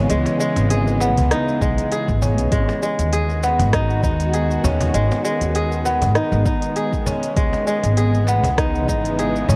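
A bright, ringing fingerpicked kora with tape echo plays arpeggios up front in this mystical organic downtempo excerpt in G# minor at 99 BPM with a light swing, alongside a woody pizzicato upright bass and a tense, detuned string-like drone that both pump to the sidechain, while smooth deep house hi-hats, rim clicks and shaker, a snappy cajon in the background, and a deep layered electronic kick from 1.6 to 9.0 seconds join in as the harmony moves through C#m7 and G#m7 in a small room coloured by worn, warbling cassette tape drift.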